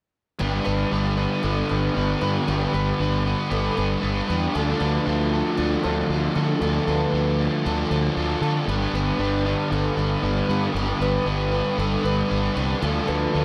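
A moderate plate reverb gives this short rock excerpt a hazy, wistful glow, with every part sounding together from 0.4 to 13.4 seconds. At 116 BPM in a straight 4/4, the music sits in G mixolydian with tuning at A4 = 444 Hz, and the harmony moves from G to Dm7, back to G and on to Dm. Up front, a crunchy overdriven electric guitar plays a riff coated in lush chorus, while a second overdriven guitar plays its own lower riff in the background through a reverse reverb. Tucked behind them, a picked twelve-string acoustic guitar adds arpeggios with a woody, boxy, octave-doubled shimmer, its old strings dressed in lush chorus and slapback echo. Underneath, a fingered electric bass brings a round, punchy fuzz tone with overdrive.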